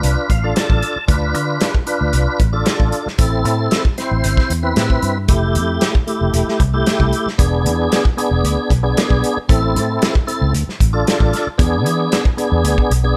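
Brooding and smoky, this short excerpt of straight-eighth soul blues in A minor moves at 114 BPM, with a tonewheel organ opening on a fill through the first 1.1 seconds before settling into accompaniment, its full, lightly overdriven tone colored by chorus vibrato and a slow rotary speaker. Beneath it, a dark, foam-muted fingered electric bass gives round, punchy low end, while an acoustic soul drum kit with a tight kick, medium-tuned snare, hi-hat and a rolled-off top sounds roomy yet sits up front. The changes run from Dm through Am, Fmaj7 and E7, returning to Am and Dm before closing on E7 in a dry mix.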